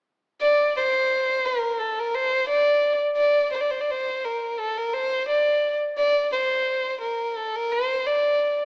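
Festive yet bittersweet, this short klezmer cut from a longer piece features a lone dark violin at 87 BPM in 2/4 with a straight feel, playing from 0.4 to 8.6 seconds with light vibrato, soft attacks and an airy bowed tone, close and intimate up front, inside a moderate recital hall reverb heard through a small-speaker sound.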